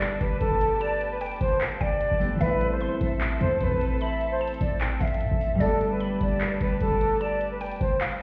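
An airy, vibrato-laced silver concert flute with tape echo carries the melody up front in this menacing, melancholic half-time trap excerpt, over a punchy, tight 808-style bass, a fingerpicked, ringing concert harp, bowed gut-string studio strings holding period-style chords, a glassy wavetable pluck with chorus and tape echo as a second line in the background, and a trap drum kit with bright hats and handclaps, the whole mix sounding muffled through a wall in a stone room, with flute and bass dropping out at 8.0 seconds for a break.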